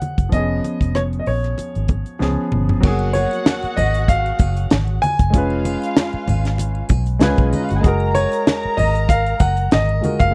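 A lightly swung 16th-note groove in 4/4 drives this short, smooth and romantic slice of lush 1970s-style soul, anchored by a tight funk drum kit with a high-tuned snare, tight kick, hi-hat, rim clicks, toms and crash sitting up front. A vintage fingered electric bass, foam-muted, round and amped, joins a moment in at 0.2 seconds and holds the low end with a dark, rounded tone, while bright, low-tuned congas ripple along in the background. A clear, intimate baby grand carries the melody high in its register, supported by a mellower grand piano comping chords beneath, and both pianos let their natural action noise come through. After a drum fill, at 2.8 seconds a woody, bowed violin section enters with vibrato and a silky top, adding a shadowy second line, while a shimmering triangle glints faintly in the background. The harmony moves between dominant chords and a plush major-ninth, and the whole piece is captured in a dry, close 1970s-style studio sound.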